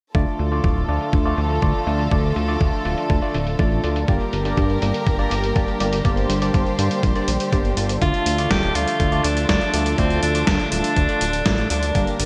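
A nostalgic, bittersweet italo disco excerpt opens with dark, bowed strings holding soft chords in shimmer reverb, barky overdriven electric piano stabs through phaser and delay, a fat detuned sawtooth bass, a thumpy electronic kick and a gritty sampler-style kit of hi-hat and gated-reverb snare carrying a filter sweep, before an edgy, up-front alto saxophone with scooped notes takes the melody at 8.0 seconds, framed by bright 1980s-style digital production.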